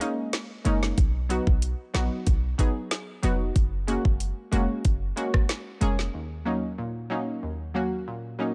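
A round, warbling analog pluck supplies the accompaniment in this bouncy, hypnotic dancehall excerpt, its detuned sawtooth and square-wave tones carrying chorus and a filter sweep with a fast attack and decaying tail. The groove sits at 93 BPM in a straight 4/4 in Eb minor, with the pluck's chords moving from Db5 through B and Gbadd9 before settling on Ebm7. An up-front electronic island pop drum kit pairs a knocking kick and woody snare with metallic hi-hats and rim clicks. A short, punchy 808-style bass joins at 0.7 seconds, its sine tone thickened by a noise layer. Drums and bass drop out at 6.1 seconds, leaving the vintage-sounding pluck alone until 8.5 seconds in a dry, close mix.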